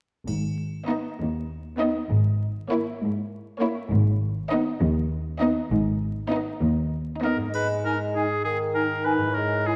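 A playful, whimsical cinematic film cue in G# minor at 66 BPM in 6/8, magical and sneaky in mood, opens with dark, expressive double basses, up-front cellos and a bright triangle, soon joined by smooth violins carrying the melody, focused second violins and distant violas, then from 7.2 s passes to a clear solo oboe, ringing fingerpicked harp arpeggios, a mellow bassoon, a roomy clarinet and an airy, hollow flute section in the background, the cue set in a wet scoring-stage reverb with a dark vinyl-crackle sheen.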